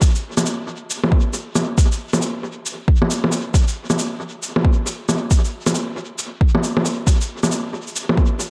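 Swung sixteenths at 136 BPM in 4/4 drive this wistful, ghostly future garage fragment, cut from a longer piece. A deep, layered electronic kick drum sits up front until 8.3 s, while muffled, compressed shaker and bongos with a tape-warm, large-room character ride on dub echo. A moderate spring reverb and an echo-heavy mix leave the percussion hanging in a haunted haze.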